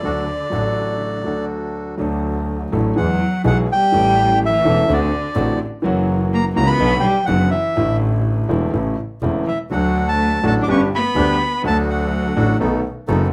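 This rough home demo in a moderately reverberant room is taken from a longer tango that feels nostalgic and passionate with a rubato pulse in four. Up front, a reedy, dark, airy bandoneon carries the melody high in its range, while a distant bowed cello adds a warm second line with vibrato and portamento. A warm, intimate, vintage concert grand piano, also up front, gives smooth accompaniment with deep bass and audible action noise, and a close, rich bowed double bass plays the bass part with expressive vibrato and portamento. A second, brighter bandoneon adds stabs bathed in plate reverb, dropping out at 2.0 seconds after a brief early break and returning at 9.7 seconds. The melody and cello stop at 12.6 seconds, leaving piano, bass and stabs to close on a B7 chord.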